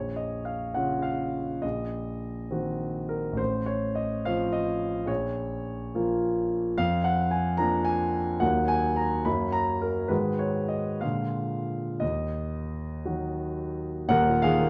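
Romantic classical character piece for solo concert grand piano, brooding and bittersweet, moving in 6/8 at 57-74 BPM counted in dotted quarters with a free, rubato feel. The piano sits up front with a deep bass, an open tone and long sustain, spanning from Eb1 up to Cb6 and tuned to A4 = 439 Hz. The harmony opens in Bb minor, leaning through Cm7b5 over Bb and F7 over A before returning home. At 6.8 s a Bb7 chord over F pivots the music into Eb minor, which then passes through Gb, Ab5 and Bb7 before settling on Eb minor at 12.0 s. A moderate large-studio reverb and a dark, warm production wrap the instrument in a soft halo, and the passage is cut from a longer work.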